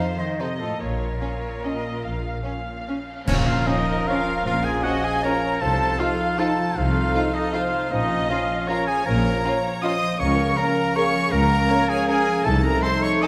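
A classical orchestral ballroom waltz in 3/4, this sweeping, bittersweet passage cut from a longer piece moves with a rubato feel over a minor-key progression. A lush violin section carries the melody from the background, joined by an airy, very quiet flute and a second, close violin section on upper lines, while rich violas, a ringing fingerpicked harp and a focused cello section fill out the accompaniment, arpeggios and bass. A distant double bass section enters at 0.8 seconds alongside bright cymbals and concert bass drum, which drop out by 4.0 seconds. At 3.3 seconds a band accent opens a new section as a clear, punchy oboe, a close-miked clarinet and a bassoon add further lines, a clear trumpet punctuates with stabs, and a dark, roomy French horn section soon follows with very quiet sustained chords. The whole orchestra sits in the generous reverb of a scoring stage, lending the bowed strings a polished, ballroom sheen.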